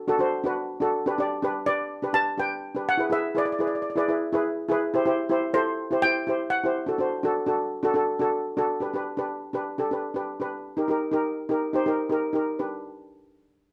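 A straight 4/4 calypso groove at 124 BPM carries this bouncy, carefree G major excerpt, where a shimmering lead steel pan struck with hard rubber sticks sings a dark, smooth melody up front until 8.2 seconds, while a mellow, soft double seconds pan played with medium rubber sticks keeps up a metallic accompaniment through 12.8 seconds in a close, detailed studio sound, the harmony moving through D, G, E, C and D, then back to G before a brief turn to Eb and home to G.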